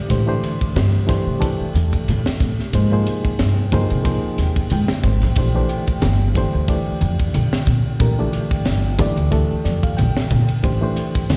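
Funky and soaring, this short cut from a longer electric jazz fusion piece moves at 91 BPM with a swung 16th-note feel in Bb lydian: a reedy, clean electric piano with fast tremolo and slapback echo plays accompaniment over a detuned, lo-fi tape-like pad with chorus, while a woody pizzicato upright bass, a tight, up-front funk drum kit with a high-tuned snare, and low-tuned, ringing congas set back in the mix fill out the groove, with piano fills at 4.4 and 9.3 seconds and a drum fill at 4.9 seconds, the band heard live through the venue's PA with recital hall reverb.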